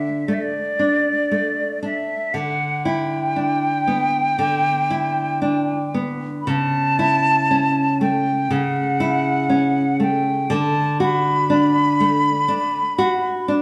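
A bright silver concert flute carries the melody up front, its airy metal tone shaped by vibrato, a soft attack and lifted highs as it sings expressively in the range from D5 to B5. Beneath it, a nylon-string guitar provides fingerpicked classical accompaniment, its acoustic voice bright and also close to the listener, spanning C#3 to F#4. This romantic duo moves at a rubato 59 BPM in 4/4, settling into D major with a serene, lyrical mood. Both instruments play together throughout the 13.6 seconds of this portion of a longer piece, sounding like a performance captured live in one room. The harmony passes from D5 through Em7/D at 2.3 seconds and A/C# at 6.5 seconds before arriving at D at 10.5 seconds. A wet, large studio reverb with a 1.4-second decay surrounds the pair, lending the room a spacious glow.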